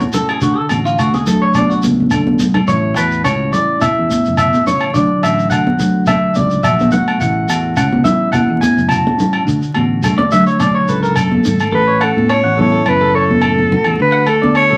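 A twangy, picked clean electric guitar takes an up-front arpeggiated solo through the first 11.7 seconds of this joyful highlife guitar band excerpt at 106 BPM in A major, swaying between D and A6 over a dark, fingered electric guitar bathed in spring reverb, a round fingered electric bass, high-tuned ringing congas with a drum fill at 2.0 seconds, compressed saturated agogo bells and a grainy, close shekere, before a breathy, subtone alto saxophone with vibrato and scooped notes enters at 10.9 seconds, all set in a club reverb with a layer of vinyl crackle.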